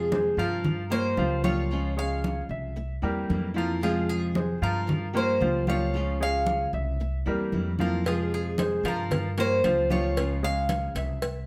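Latin Cuban son and guajira with a sultry, warm mood, this excerpt sets an up-front picked Cuban tres with metallic double strings and plate reverb on the melody over a fingerpicked flamenco guitar. A worn baby grand piano plays arpeggios, a woody, growly pizzicato upright bass thumps close by, and ringing congas played with soft hands sit in the background as the harmony cycles through Fm, Gm7b5, Db and C7. At 8.1 seconds a tight, high-tuned cowbell struck with hard hands joins, dry and close, in a moderate studio room.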